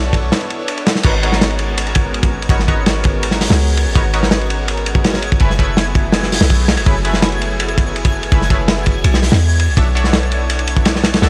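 Nostalgic yet frenetic, this drum and bass and jungle cut runs at 165 BPM in G# phrygian, driven by a crunchy, saturated breakbeat kit with a punchy kick, dark cymbals and a rolled-off top sitting up front, over a deep, boomy 808-style sine bass. Band-passed, nasal sawtooth chord stabs with detuned chorus and dub echo pluck through a Bm11, G#m11 and F#m11 progression. From 1.6 seconds a twinkling granular FM texture with an octave-up shimmer and its own reverb sparkles in the background, all wrapped in a gritty, cassette-tape hardware sound.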